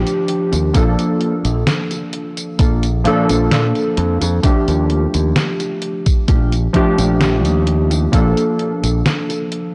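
Nostalgic and woozy, this slow 65 BPM vaporwave excerpt in Bb major drifts over Ebmaj9 and Bbmaj7 chords, with warbly, detuned lo-fi synth keys carrying chorus and tape echo up front, a bright, direct fingered electric bass, a thumpy electronic kick, a detuned 8-bit drum machine tapping hi-hat, snare and tambourine, and a dark, clean electric guitar riff with 12-bit sampler grit sitting in the background, all in a gritty cassette-tape sound with light reverb.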